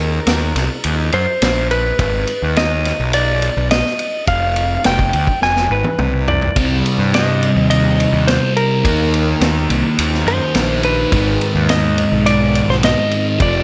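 Psychedelic rock in a dark, hypnotic mood, this excerpt moves at 105 BPM in a straight 4/4, cycling through Eb5, Abm, Fsus2 and Cm chords. A clean lap steel guitar carries the melody from the start, its dark, compressed slide tone trailed by tape echo. Underneath, a fuzz-picked electric bass sits up front with a warm, overdriven fuzz in the low register. A vintage acoustic drum kit enters at 0.3 seconds with tight kick, medium-tuned snare, toms and dusky ride cymbal, its saturated sound rolled off at the top, and a drum fill from 5.4 seconds leads into the next phrase. At 6.6 seconds a thick, double-tracked fuzz guitar riff arrives up front, its distortion colored by a phaser, as light reverb and a small room ambience surround the whole.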